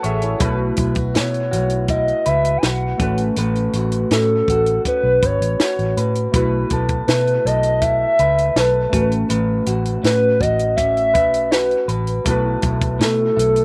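A hazy, laid-back indie and bedroom pop passage opens with a compact cocktail drum kit, its punchy kick and high-tuned snare up front, alongside a round, foam-muted vintage bass, a twangy, slightly broken-up electric guitar through a small old amp with a wobbling pitch drift, and mellow lo-fi synth keys sitting in the background with chorus and slapback echo. At 1.2 seconds a nostalgic, warbling lead enters up front, its detuned square and sawtooth tone carrying vibrato, chorus and slapback echo over chords moving between B7sus4 and A69. The sound is dry, with little reverb, recorded outdoors and free of room sound.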